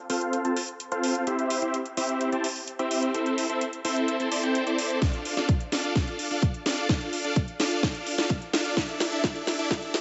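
Festival progressive house at 128 BPM in a straight 4/4, this emotional, anthemic excerpt is a single build-up cut from a longer piece. A huge, euphoric supersaw lead carries the riff from start to finish, its detuned sawtooth unison bright and up front, with a moving notch, sidechain pumping, dub echo and a filter sweep running across the whole 10 seconds. The house drum kit plays throughout with a cracking snare and metallic hats, while a punchy, layered electronic kick drum enters at 5.0 seconds as a drum fill begins. Both drum parts sit close and tape-warm, re-recorded in a small room. Underneath, the harmony moves from F through C and Am to Dm before settling on Dsus2, all within a lush hall reverb, with a high-pass filter on the mix and nothing above 7.9 kHz.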